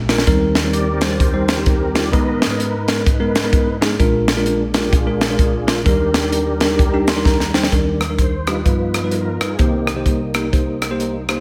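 A swung 4/4 groove drives this jubilant yet reverent uptempo gospel excerpt, with a crisp fusion drum kit, its punchy kick and high-tuned snare mixed up front, laying down hi-hat, rim clicks and fills. A bell-like tine electric piano with slapback echo comps brightly, while a lightly overdriven tonewheel organ with key click, chorus vibrato and slow rotary speaker carries the lead over chords moving from Abmadd9 through Bb7 to Ebmaj7. An electric piano fill at 6.8 seconds and a drum fill lead into a new section at 7.7 seconds that shifts toward Gaug7 and Cm7, all set in a recital-hall reverb that gives a big arena sound.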